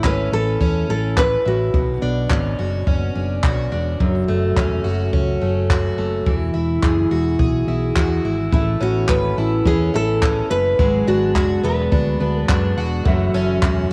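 Heartfelt and sunny, this swung acoustic pop excerpt rides on a boxy, shimmering plugged-in twelve-string acoustic guitar up front, a round hollow-body electric bass and a small-room cocktail drum kit with a punchy kick, handclaps and tambourine on cassette tape, while a fingerpicked classical nylon-string guitar carries the melody, a clean, compressed twelve-string electric guitar adds delayed arpeggios in the background from 8.5 seconds, and a clear concert grand piano with long sustain slips in at 13.0 seconds, all within a homemade cassette sound and moderate spring reverb.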